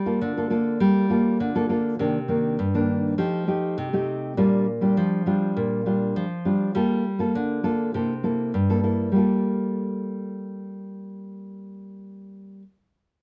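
A full-bodied, thumb-plucked nylon-string guitar plays alone and up front in this lively, bittersweet samba fragment cut from a longer piece, moving through chords such as Gm9, Cm9, F9 and Bb6 with a classical acoustic tone before reaching a new section at 9.1 s, heard in a small room with moderate reverb and a mellow top end.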